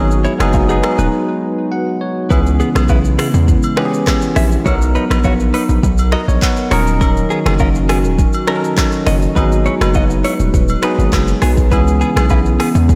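A bright, bell-like tine electric piano with a barky edge opens this hypnotic, sultry afrobeats excerpt at 102 BPM in C# dorian, joined at once by a punchy, saturated 808-style bass and a crisp afro-pop kit of deep kick, hi-hat, snaps, handclaps, rim clicks and shaker. A dark, hollow pad with chorus sustains chords in the background while a clean, compressed electric guitar picks a riff through delay and agogo bells and woodblock add distant colour. During a brief break the electric piano plays a fill, and it returns with another at 5.8 seconds over chords moving from C#m7 through Bmaj7 and D#m7, all bathed in a dreamy hall reverb.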